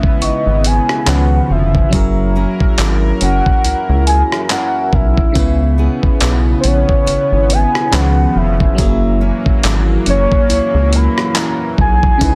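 Sensual and longing, this contemporary R&B excerpt sets a round, octave-layered synth lead with chorus, tremolo and tape echo over a gritty, thumpy sampler-style drum kit of kick, hi-hat, rim click and handclaps, a rubbery square bass entering at 0.2 s, glassy FM electric piano, shimmering pulse-width pad chords, a fingerpicked nylon-string guitar, and a delicate celesta heard from 0.2 to 9.0 s, all in a dry, dense, heavily limited modern mix.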